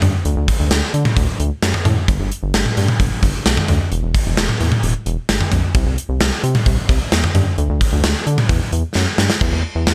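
Dry and close, this cool, nocturnal synth-pop fragment pairs a rubbery, hollow square-wave bass with a fast-attack filter pluck against a punchy, up-front gated 80s drum kit of bright cymbals, medium-tuned snare, kick and toms, which rolls into a drum fill at 9.0 seconds before the cut.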